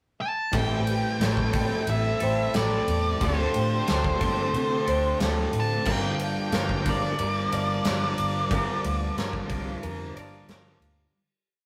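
A rough rehearsal-room recording with moderate reverb frames this hazy, brooding shoegaze and dream-pop rock piece at 90 BPM, where an up-front octave-fuzz lead guitar spins a motif-based melody over a shimmering, boxy twelve-string acoustic ostinato, a thick background fuzz guitar and a twangy, compressed electric guitar both strumming chords with whammy-bar dips, a round, foam-muted vintage bass driving eighth notes, and a polished gated 80s drum kit with bright cymbals and a tight kick, all moving through Am7, Dm7 and Gm7 after a short pickup before fading out from 8.5 seconds.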